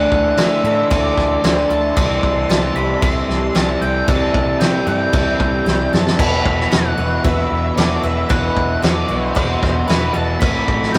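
Rough and saturated, steeped in a wet stone-room reverb, this brooding, hazy shoegaze and dream pop rock excerpt puts a loose indie drum kit up front with a fat snare, punchy kick and dark cymbals, adding a fill at 5.7 seconds, over a round, foam-muted fingered bass, a slightly broken-up riff from an electric guitar through a small old amp alongside a riff from a thick fuzz guitar, a fuzzed octave lead melody, a shimmering, boxy twelve-string acoustic picking arpeggios, and a detuned, wave-folded analog pad holding chorused chords in the background.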